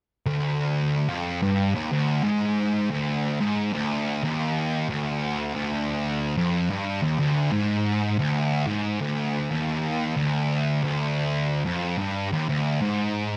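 A thick, fuzz-drenched electric guitar sits up front and plays alone from 0.3 to 13.4 seconds, its picked, double-tracked tone distorted yet warm as it churns in the low register between D2 and G#2. This brooding, sludgy metal passage moves at 91 BPM in a straight 4/4. A moderate studio ambience surrounds it, and the clip is cut from a longer piece.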